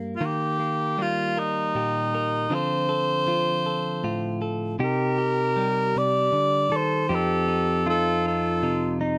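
In a slow, straight 6/8 at 52 dotted-quarter beats per minute, this acoustic folk-pop ballad unfolds with an intimate, tender mood, tuned to A4 = 435 Hz. A clean electric guitar, recorded direct, sets the accompaniment from the first moment. Its bright, twangy, picked tone is compressed and sits up front. A warm, close-miked cor anglais carries the melody in a classical style from 0.2 seconds, singing solo over chords that move from Eb through Dm7 and Cm7 to F7. At 4.8 seconds a pedal steel guitar joins with a second line, played with fingerpicks and slide, its clean, compressed sound shaped by volume swells. The room is nearly dry and the microphones close and detailed, giving the cut from a longer piece a present, unadorned feel.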